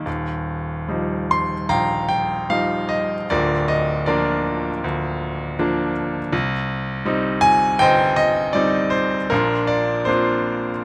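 Peaceful and warm, this short excerpt from a longer classical piece features a solo grand piano in E-flat major, moving with rubato freedom at roughly 71-82 BPM in 4/4 and settling on Bbadd9 near 9.3 seconds after opening on Ebadd9. The bright, brilliant piano spans from deep in the bass up to C6, its long sustain ringing out up front. Close, detailed miking with little reverb gives an intimate feel, capturing audible action noise and a faint mains hum.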